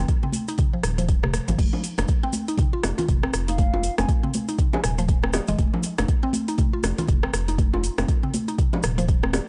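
Earthy and driving, this afro house excerpt moves at 120 BPM in F minor with a 16th-note swing, built on a deep, up-front electronic kick, a tape-toned afro-pop kit with metallic hats, crash, rim click and toms, thick-skinned hard-hand congas, a grainy cabasa in the background, and tight soft-hand bongos that join at 1.7 seconds. A round, dark analog bass with tube saturation and a woody, mallet-like synth pluck playing arpeggios through chorus, phaser and analog delay both pump with sidechain over an F7(no3) chord, while an airy bamboo bansuri with vibrato and delay appears briefly from 3.5 to 4.9 seconds. The sound is dry and gritty, with transformer saturation, a small room reverb and highs rolled off above 10.3 kHz.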